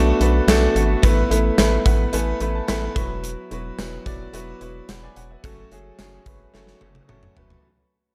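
Dramatic and moody, this short cut from a longer 1980s-style pop piece moves at 109 BPM in a straight 4/4, and the whole passage fades out over its 7.6 seconds. A clear, open baby grand piano sits up front as accompaniment with long sustain, adding a fill between 1.6 and 3.2 seconds. Underneath, a round analog bass blends square and sine tones with a fast-attack filter pluck, sustaining deep and dark in the lowest register. The gated 80s drum kit enters at 0.2 seconds with a punchy kick, a medium-tuned snare, hi-hat, tambourine and toms in an airy, polished big-room sound, and it closes on a fill from 6.5 seconds. The chords pass from Bm7 through Asus2 and Esus2 to F#m, all under a dark production with light studio reverb.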